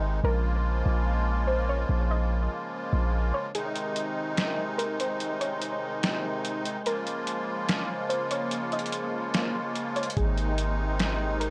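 A half-time 4/4 pulse at 145 BPM carries this floating, dreamy cloud-rap fragment, cut from a longer piece and moving between Bbm7 and Abmaj7. A reedy musette accordion holds sustained chords up front throughout, its shimmering, vintage tone pumping under sidechain compression, while a soft, round pluck traces a dark melody through chorus and tape echo. A deep, boomy 808-style bass opens alongside them but falls away just before the trip hop sampler-style drums arrive at 3.5 s, pitched down and gritty with a thumpy kick, medium-tuned snare and hi-hat that carry vintage 12-bit crunch. An airy, breathy wind-like texture drifts in at 5.1 s, sitting in the background with its own reverb. The bass returns at 10.2 s on the Abmaj7 chord, all set in a modest booth ambience.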